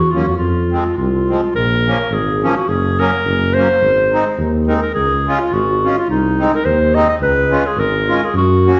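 A straight 2/4 pulse at 106 BPM drives this short, festive and jolly alpine dance band piece in Db major, cut from a longer performance. A warm, classically styled clarinet carries the melody up front, while a mellow tuba with light vibrato supplies the bass. A reedy, full accordion with slow beating fills in the accompaniment, close-miked and dry against the recital-hall reverb that sets the listener further back in the room.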